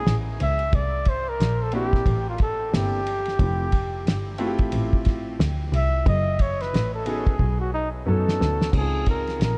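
Jazz-hop with a smooth, warm mood, moving at 90 BPM in 4/4 with a swung sixteenth-note feel, cut from a longer piece. A breathy flugelhorn carries the melody as a solo from the start, its soft attack and light vibrato sitting up front with a touch of delay. Beneath it, a single bowed double bass plays with vibrato and a focused, boxy tone, while a cloth-damped drum kit delivers a thuddy, dry groove of tight kick, fat snare, hi-hat and dark ride and crash cymbals with a rolled-off top. A dark baby grand piano enters at 1.7 seconds, adding vintage accompaniment with long sustain beneath the horn. The harmony drifts through lush extended chords such as Amaj7, C7 and Fmaj7, and a drum fill at 7.4 seconds leads toward a Dbmaj7 at 8.7 seconds, all set in light studio reverb.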